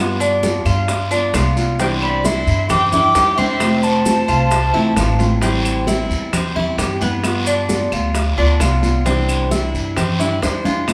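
A relaxed, sunny Cuban son and guajira groove opens at 0.0 seconds with fingerpicked nylon-string guitar, metallic double-strung tres arpeggios and a thumpy, dark gut-string upright bass plucked up front, soon joined by background congas and tight, high-tuned bongos played with soft hands, grainy close maracas, a raspy distant guiro and very quiet compressed woody claves, while from 1.8 to 5.2 seconds a pure, crisp-attacked flute carries the melody over a bowed violin section with vibrato, all in a moderately reverberant large room in this fragment cut from a longer piece.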